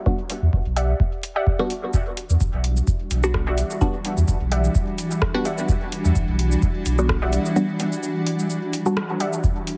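A muted, nasal dub chord stab, treated with phaser, cassette tape, sidechain pumping and dub echo, leads this hypnotic, deep dub techno excerpt on a single Em9, over a clean sine sub bass, a tape-warm electronic kick and a booming analog drum machine with metallic hi-hats, rim click and shaker, while a warbling lo-fi pluck with chorus and echo enters at 0.8 s, a cloudy granular pad with built-in reverb arrives at 2.7 s, the mix carries a heavily compressed radio sound with vinyl crackle and light digital ambience, and the band hits an accent at 9.0 s.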